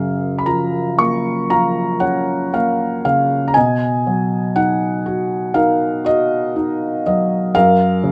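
A rubato pulse in four drifts freely through this short excerpt of lyrical classical solo piano, melancholic and wistful in mood. A felt-muted upright piano plays alone for the full 8.1 seconds, its soft, mellow tone sitting intimate and up front, ranging from low F# up to high C#. The chords move from F#maj7 to Bmaj7 at 3.6 seconds and back to F#maj7 at 7.5 seconds, captured by close, detailed microphones in a dry room.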